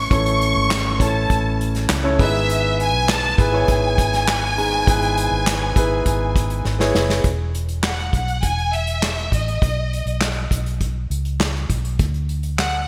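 A bowed violin section carries the hopeful, anthemic melody in this clip of piano-driven pop in E major at 101 BPM. Beneath it, a clear concert grand with audible action noise and long sustain, a dark, foam-muted electric bass and an acoustic kit of punchy kick, snare, hi-hat and handclaps move through A and E/G#. A drum fill at 6.7 seconds leads into a second passage over E5 and B where the piano has dropped out by 7.3 seconds, leaving the lush, vibrato-rich strings, bass and drums in a bright 1980s-style digital production with moderate hall reverb.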